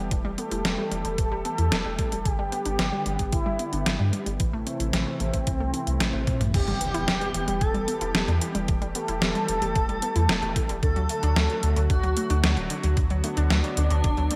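Synthwave at 112 BPM in E minor, nocturnal and driving, where a smooth, nasal synth lead with vibrato and ensemble chorus carries the melody over a detuned sawtooth pad that pumps with sidechain and shimmers with tremolo and chorus. A punchy, wave-folded unison pluck spins delayed arpeggios in the background while a round, deep analog bass with a filter sweep pumps beneath them, and a thumpy electronic kick pairs with an up-front, tape-warm 8-bit drum machine whose snare, hi-hat, toms and crash ring through gated reverb. After a drum fill at 6.3 s, an airy, dreamy second lead with phaser and delay enters at 6.5 s alongside an electronic background impact, all set in a lush hall with bright 1980s-style digital sheen as the chords move from Em through G and Am to D.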